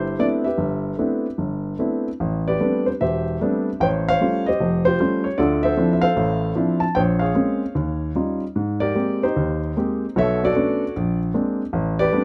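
A grand piano carries this solo jazz performance alone, heard up front with an intimate, natural tone, short sustain and audible action noise. The mood is warm and relaxed: the pulse sits at 151 BPM in 4/4 with a swung eighth-note feel, loosened by rubato, and the playing spans from deep in the bass up to the upper middle of the keyboard. A brief opening statement on Cmaj13 gives way at 2.2 seconds to a longer passage that moves through rich extended harmony, from Am11 and an altered A7 into Dm9, then drifting through Bbm9, Eb9 and Abmaj9 before Bm9 and Bb9 lead back to Am11. A moderate studio reverb lends a small sense of space, and the overall production is dark and warm. The recording is a short cut from a longer piece, running to 12.2 seconds.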